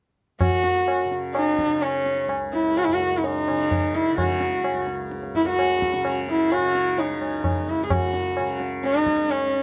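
A small room lends a moderate ambience to this short Hindustani classical fragment, cut from a longer piece, with an introspective, meditative mood. A dark, woody sarangi carries the melody up front, its single bowed line drawn with a soft attack, light vibrato and gliding portamento, its sympathetic strings sounding along with it. Behind it, a mellow acoustic tanpura sits low and quieter in the mix, its softly plucked, buzzing drone shimmering steadily. A low-tuned tabla supplies the percussion with a short ring, heard close and dry. All three parts play together from 0.4 to 9.6 seconds in a single section in straight 4/4.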